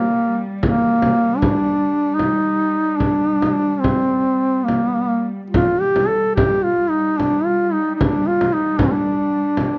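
Caucasian folk lament in G minor, solemn and mournful, moving in a rubato 3/4 at around 70-79 BPM in this brief excerpt cut from a longer piece. A mellow duduk carries the melody up front with vibrato, soft attacks and scooped notes, held over a dark, veiled drone from a muted, bowed cello section. A deep frame drum struck with hard hands joins at 0.6 seconds, all captured by close, detailed microphones with light reverb.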